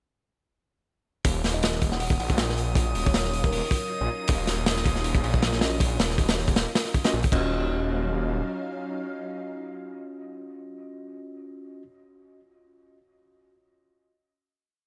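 A heavily chopped, crunchy breakbeat kit with a punchy kick and dark cymbals drives this atmospheric, raw drum and bass piece at 158 BPM in Eb minor, entering at 1.2 seconds alongside a thick, detuned saw bass that carries a menacing dub-style line up front. Around them, a kalimba plucks short mellow, woody phrases through dub echo, a glassy texture holds a single high note with drifting overtones in the background, and a silky string machine sustains chords through phaser and ensemble chorus. A clean tine electric piano with 12-bit sampler grit adds sparse, echoing chord stabs that carry on past the drums, which stop at 7.4 seconds, into the final chord.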